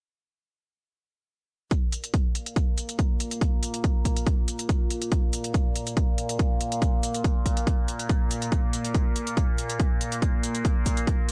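Driving peak-time techno at 141 BPM in a straight 4/4, dark and hypnotic, heard as a short cut from a longer piece. A heavy, overdriven electronic kick sits up front from 1.7 seconds, layered and produced, carrying most of the weight of the mix. Smooth, layered electronic hi-hats enter at the same moment, also overdriven, and sit further back with sidechain pumping tying them to the pulse. At 2.4 seconds an overtone-sweeping drone fades in on its slow attack, blending sawtooth and sine tones between Bb2 and Bb3, resonant and sustained with a long release, chorus, its own built-in reverb and sidechain pumping. The overall room is dry, leaving the drums close and tight while the drone's moving overtones supply the hypnotic colour.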